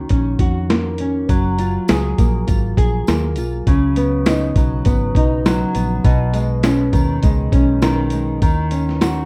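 A rough home-demo sound with moderate room reverb frames this hazy, laid-back indie and bedroom pop excerpt in F# major at 101 BPM with a light sixteenth-note swing, where an up-front, fingerpicked nylon-string guitar with subtle chorus and vibrato drifts through D#m7, F#maj9, C#9sus4 and B69 over a dark, round, foam-muted electric bass and a gritty, compressed boom bap sampler-style kit with a thumpy kick and medium-tuned snare, while a jingly, close and dry tambourine sits in the background from 1.3 seconds.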